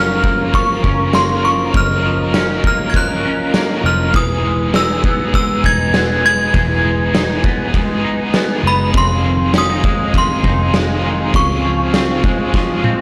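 A ringing, inharmonic synth chime carries the melody through ensemble chorus, phaser, tremolo and tape echo in this floating, ethereal dream pop excerpt at 100 BPM, moving from Gbmaj7 through Emaj7 and Fm7 to Dbmaj7. Beneath it, a twangy clean electric guitar plays chorused, echoing arpeggios, a crunchy overdriven guitar adds tremolo-laced accompaniment, a flute-like tonewheel organ holds sustained chords through a fast rotary speaker, and a foam-muted, round vintage bass anchors the low end. An oversized, low-tuned drum kit enters at 0.2 s, up front with a punchy kick, ride, snare, tambourine and toms, and it plays a fill at 12.5 s, all set in a small room and captured as a dry, gritty recording with transformer saturation.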